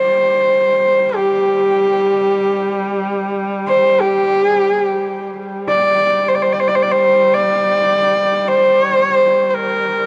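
Mongolian folk in free time, this solemn, windswept excerpt sets an up-front, husky horsehead fiddle melody, ranging between G4 and D5 with light vibrato, portamento and a smooth top, over a quieter, focused horsehead fiddle drone on G3 with its own vibrato and portamento, both bowed parts running the full 10.1 seconds through two matching phrases in a dark, lightly reverberant production.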